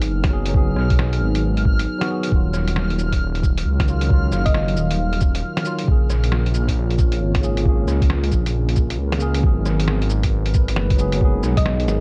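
Melancholic and rainy, this future garage excerpt swings in 4/4 over a muffled, pitched-down electronic kick and a lo-fi sampler-style kit of cabasa, hi-hat, rim click and medium-tuned snare, while an up-front, menacing detuned saw bass with a filter swell pumps against the sidechain beneath a clean tine electric piano through a combo amp, filtered and echoed with analog delay. A deep, moody analog pad sits in the background with chorus and phaser, joined until 9.4 seconds by a reversed, granular texture glinting high above. A round, FM thumb-piano-like pluck with 12-bit grit and tape echo sounds only in brief flickers at 4.5 and 11.6 seconds, all within a light reverb and a cassette-tape haze.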